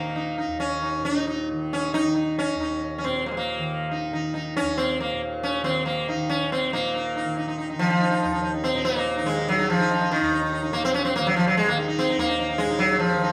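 A round, buzzing sitar sits up front with its sympathetic strings ringing as it carries a meditative, longing melody in Eb raga kafi over a softly plucked, shimmering tanpura drone in this Indian classical fragment, which gradually speeds up from about 134 to 147 BPM in 4/4 inside a reverberant recital hall.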